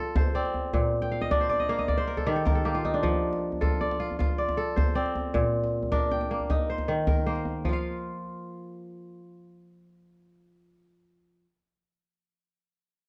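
Hypnotic and warm, this West African traditional excerpt in 12/8 at 104 BPM (dotted quarters) in F mixolydian places a bright, ringing kora up front with fingerpicked arpeggios and a crisp fill from 1.0 to 3.0 seconds, over deep, soft-handed djembe that drops out at 7.8 seconds and leaves the kora alone, all within a dark production touched with light reverb.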